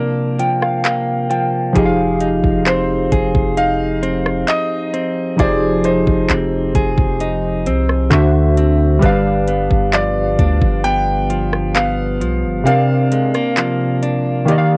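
A home cassette recording with light reverb gives this late-night, sensual contemporary R&B passage its intimate feel, opening on a brief break where round, detuned analog keys with chorus and a filter sweep play a fill over clean, scooped electric guitar arpeggios. An electronic drum kit of knocking kick, metallic hi-hat, handclaps and rim click, roughened by 12-bit sampler grit and cassette tape, comes in at 0.4 seconds, and at 1.8 seconds a deep, mellow, sine-toned 808-style bass enters up front. A bright, polished concert grand piano carries the melody above, and the kick falls silent at 12.7 seconds as the harmony returns to C9sus4.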